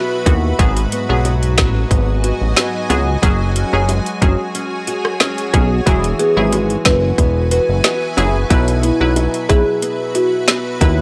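An overdriven island pop drum kit sits up front with its tight kick, woody snare, metallic hats, finger snaps and rim clicks, driving this bouncy, sunny dancehall excerpt alongside a fat, detuned analog bass with a wave-folded sawtooth edge and a filter sweep. Crisp, bright wavetable chord stabs and a fingerpicked nylon-string guitar playing arpeggios fill the middle, while a cloudy, evolving granular pad with built-in reverb and sidechain pumping holds sustained chords and very quiet, high-tuned bongos tap underneath. At 6.2 seconds a rosewood marimba played with medium mallets enters with a short melody through analog delay, all captured in a dry, gritty hardware recording.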